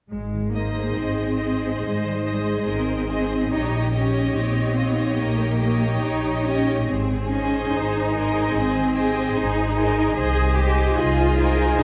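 Moving in a rubato 4/4 at 72 BPM, this slow romantic orchestral movement in Ab major feels tender and serene, and it is cut from a longer piece. A ringing, fingerpicked concert harp spreads arpeggios from the opening, while up-front double basses and expressive cellos, bowed with soft attacks and portamento, carry the bass. At 0.5 seconds a lush violin section enters on a high second line in the background, joined by a close, focused viola section playing accompaniment. The melody arrives at 1.8 seconds in a distant, even violin section with smooth vibrato, sitting lowest in level among the strings. The harmony travels from Ab through Eb7 over Bb and back to Ab, landing on Ab over C, all within a dark production and moderate scoring-stage reverb.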